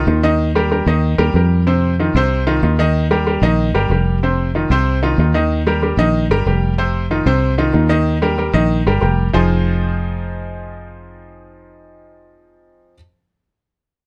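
A bright baby grand piano and a round, foam-muted fingered electric bass start together, driving a fiery salsa groove in 4/4 that is cut from a longer piece. Up front and intimate, the piano plays accompaniment with audible action noise and short sustain, moving back and forth between Eb and F5 chords before settling on Fm7 at 9.3 seconds, while the dark, direct electric bass anchors the low end. Light reverb and a dark production surround the pair for about 12.9 seconds.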